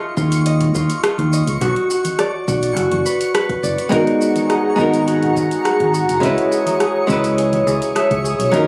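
A dark, clean archtop guitar with tape echo steps up front at 3.9 seconds in this smooth, relaxed sunset chillout excerpt, joining a bright, ringing concert harp that plays echoed arpeggios from the start over a faint, twinkling granular shimmer. A growly, punchy fingered electric bass and tape-warm deep house drums with hi-hat, rim click and shaker anchor the straight 4/4 groove, backed by a deep electronic kick in the background and very quiet, low-tuned congas. An airy, breathy pad with chorus adds sustained chords from 4.3 seconds as the harmony moves through lush minor ninth colours, all caught with a light digital ambience, a small-room feel and a faint mains hum.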